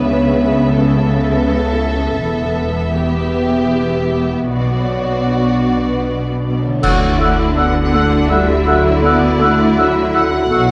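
Tender and uplifting, this cinematic film-score excerpt for orchestra moves in a rubato 3/4 at around 75-83 BPM, shifting from B minor to D major at 6.8 s. Violin sections carry the melody and a lush second line over dark, soft-attacked violas, a rich cello section in the background, woody double basses and a ringing fingerpicked harp playing arpeggios, while a bright, close cymbal swell with clash cymbals and concert bass drum rises between 4.5 and 8.3 s. At the 6.8 s accent, an airy flute, a warm oboe and a distant clarinet join with second lines, and a roomy, shadowy French horn section adds sustained chords, all bathed in a wet scoring-stage reverb and a worn, warbly cassette-tape pitch drift.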